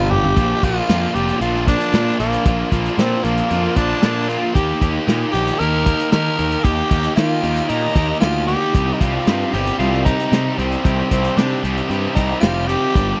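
A growling tenor saxophone leads this driving, gritty classic rock passage, its raspy, close-miked tone sitting up front with vibrato as it carries the solo melody between Bb3 and Bb4. Underneath, a fuzzy, punchy picked electric bass sits forward in the mix, overdriven and direct. Two electric guitars play riffs: a bright, tightly distorted one and an overdriven semi-hollow guitar with a warm hollow-body tone tucked into the background. The vintage drum kit opens with a short fill before the groove settles in, its small-room sound muffled and lo-fi, with a tight kick, a medium-tuned snare, hi-hat and toms, and a rolled-off top. At a straight 114 BPM in 4/4, the harmony moves from Bb to Eb at 4.5 seconds and to Cm at 8.7 seconds. The dry, close recording has a 1970s studio character, and the passage is cut from a longer piece.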